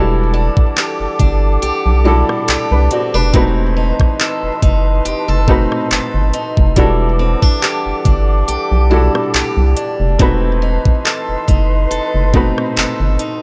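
Moody and late-night, this slow contemporary R&B excerpt settles on a lightly swung 16th-note feel over a brief move from Em11 to B7b9/E. A felt-muted upright piano plays soft, intimate accompaniment with a short sustain and a vintage tint, while a picked acoustic archtop guitar adds boxy arpeggios, finger squeaks audible in the playing. Above them, a large flute ensemble holds breathy sustained chords with vibrato and rolled-off highs, its unsteady tone pumped by sidechain compression. Underneath, a rubbery square bass sits up front with a bouncy, nasal filter pluck and a dark, resonant body. At 0.6 seconds a trap drum kit enters, its knocking kick, crisp hi-hats, handclaps and rim clicks sounding electronic and tape-warm. A small room ambience gathers the parts into a close space.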